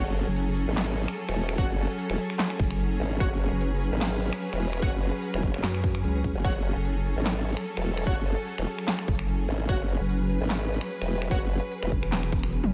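Set in light reverb and a digital ambience, this aggressive, chaotic excerpt of heavy wobble dubstep moves at 148 BPM in a swung half-time feel in F# minor, driven by two up-front wobble basses (one saturated and chorused with a formant sweep, the other dark and nasal with a resonant vowel sweep), an overdriven dance kit of finger snaps, handclaps, crisp hats, a punchy snare and toms, and a layered electronic kick entering at 1.6 s, while distant, smooth symphonic strings hold an F#madd9 chord under sidechain pumping and detuned supersaw stabs sit in the background through a diffuse delay.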